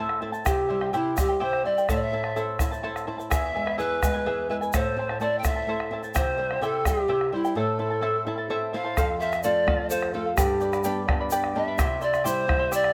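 Closely miked and lightly reverberant, this wistful, earthy Andean folk excerpt in A minor moves in 6/8 at 85 BPM, with an airy, wooden pan flute carrying the tongued, vibrato-tinged melody up front over a shimmering, fingerpicked charango with double strings, a fingerpicked flamenco guitar, a deep, dark bombo and a grainy, compressed tube shaker. A nylon-string guitar fill arrives at 8.3 seconds, before the harmony turns to F and then G from 9.0 seconds.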